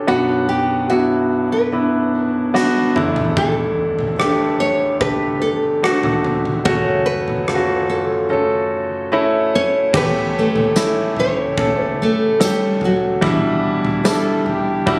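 Longing and heartbroken, this straight 4/4 pop ballad at 73 BPM, cut from a longer piece, sets a bright, fingerpicked nylon-string guitar melody with audible finger squeak over an intimate, up-front grand piano whose action noise can be heard, as a huge arena drum kit with a punchy kick and bright cymbals arrives with a fill at 2.5 seconds, a jingly, saturated tambourine joins at 10.8 seconds, and a distant French horn section with light vibrato adds a second line at 14.0 seconds, all captured on a phone in a reverberant studio room over chords moving from Bm through Asus4, F#m and A7 to Em7/B.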